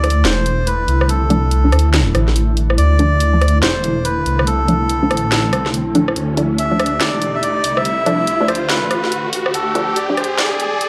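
This cavernous, dark deep dubstep excerpt has a dim, warm production with moderate room reverb, and it runs at 142 BPM in a swung half-time feel in D dorian over a D minor chord, building up across its 10.9 seconds as a riser climbs and filter sweeps move over the chord stabs and the pad. A reedy, breathy melodica carries the melody up front with dub echo, while a filtered dub chord stab adds muted, wave-folded plucks with chorus and echo, and a granular cloud pad spreads blurred, evolving chords beneath. A rumbling, detuned saw bass sits up front with saturation, and a layered garage drum kit drives the groove with a cracking snare, rim clicks and hi-hats in a small room ambience.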